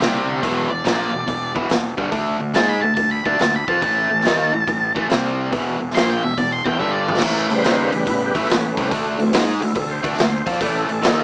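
Blues rock power trio with a southern rock streak, this gritty, raunchy clip moves at 141 BPM in 4/4 with a swung eighth-note feel. An octave-fuzz lead guitar carries the melody in a dark, distorted tone until 7.2 seconds, while a bright, double-tracked, picked crunchy guitar drives the riff up front throughout. Beneath them, a fingered electric bass growls with punchy fuzz and overdrive, and a raw garage drum kit of kick, snare, hi-hat, toms and crash sounds saturated and pumping in a small room, its top rolled off. A drum fill at 6.8 seconds hands off to an overdriven tonewheel organ, which enters at 7.5 seconds with full, thick sustained chords, key click, chorus vibrato and a slow rotary speaker for its solo. The harmony moves through C5, E5, D5 and A5 before shifting to A7 and D7 in the second part. Light reverb and a small-speaker sound color the whole clip.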